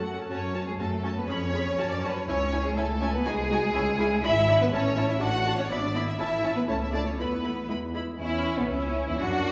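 A brisk classical-period string orchestra movement in F# minor opens at once with a smooth, distant violin section carrying the melody over lush, vibrato-rich violas and up-front bowed double basses, moving at 121 BPM in a straight 2/4. At 0.3 seconds a second violin section joins with a prominent supporting line, while a clear, focused cello section adds to the bass. The harmony turns from F# minor through C# minor toward A major, then passes through an Esus4 and E before reaching a Bsus2/4. The graceful, lively passage rings in the reverb of a church or concert hall, as if lifted from a longer piece.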